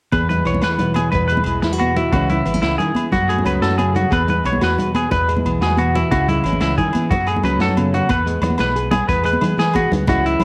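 A sunny, carefree highlife guitar band groove opens at 0.1 s with the full ensemble, moving at 121 BPM in dotted quarters over a straight 12/8 feel in E major. Up front, a bright, clean semi-hollow electric guitar picks arpeggios coloured by spring reverb, analog delay and cassette tape. Beneath it, a warm, fingerpicked classical nylon-string guitar carries the accompaniment with its own tape tint. A dark, round fingered electric bass sits firmly underneath, while a vintage drum kit with a medium-tuned snare, punchy kick and rolled-off top keeps time from a mid-forward studio room. High-tuned congas played with soft hands ring close and dry, and agogo bells chime in the background. The harmony circles through E, C#m and F#m, arriving back on E as a new section begins at 8.1 s, and the light reverb of the home cassette recording lends this cut from a longer piece a relaxed, homespun character.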